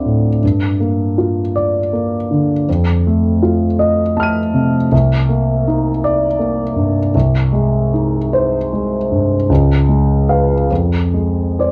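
The rhythm moves in a slow 6/8 at about 53 beats per minute counted in dotted quarters, with uneven beats and free rubato that keep the pulse loose and breathing. This is an impressionist classical solo piano piece, hazy and wistful in mood, cut from a longer work and lasting 11.7 seconds. A concert grand carries everything alone, spanning C2 to Eb7, with deep bass, audible action noise and an intimate, natural tone placed up front in a dry space. The sound is colored by worn, warbling old cassette tape whose pitch drifts, lending a faded, dreamlike quality. The harmony wanders through Gm7, F7, Cm9 at 4.9 seconds, Abmaj7/C and Db7, before settling on Fm at 10.7 seconds.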